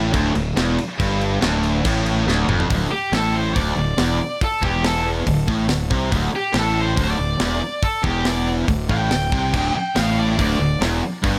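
A high-gain lead guitar solo rides up front from 2.9 s in this heavy, aggressive hard rock fragment, cut from a longer piece, after a tight metal drum fill at 2.3 s with a high-tuned snare and rolled-off top, while a growly, punchy fuzz bass, a bright tight distorted guitar riff, a scooped distorted electric guitar and a double-tracked heavy high-gain guitar churn beneath in a dry room.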